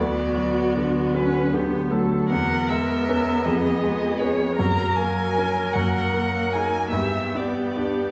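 This classical excerpt, a slow romantic movement for piano quartet in 6/8 at 52 BPM with a rubato, tender feel, has all four players sounding from the first moment, with a bowed violin singing the melody in a rich, distant voice, using vibrato and portamento, while the cello carries a second line with soft attacks. Beneath them the viola adds a warm, close accompaniment, and a clear baby grand piano sits up front and intimate, its action noise audible, as the harmony moves from Bm/D through C#7/E# toward F# and arrives on G at 6.9 seconds. A wet recital hall reverb places the listener further back in the room, lending the whole 8.1-second passage a softly glowing depth.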